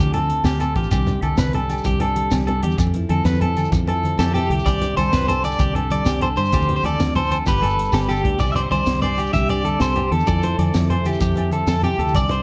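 A slightly broken-up electric guitar sits up front with the tremolo-treated melody in this carefree highlife guitar band clip, sounding for a moment at the start and then returning at 4.2 seconds to carry the tune to the end. Beneath it, a second picked, twangy guitar at the edge of break-up plays arpeggios through a slapback echo, while a dark, compressed clean guitar with phaser plays accompaniment in the background. A round, foam-muted fingered bass anchors the C major progression of Dm7, Csus2, Fmaj7 and G at 128 BPM in a straight 12/8. The crunchy breakbeat kit is saturated and gritty, with a high-tuned snare, a tight kick and a rolled-off top, opening with a drum fill and adding another just before the section repeats at 8.4 seconds. Low-tuned, thick-skinned congas and a grainy shekere fill out the groove, with ringing, vintage agogo bells set far back, and the band sits in a light reverb.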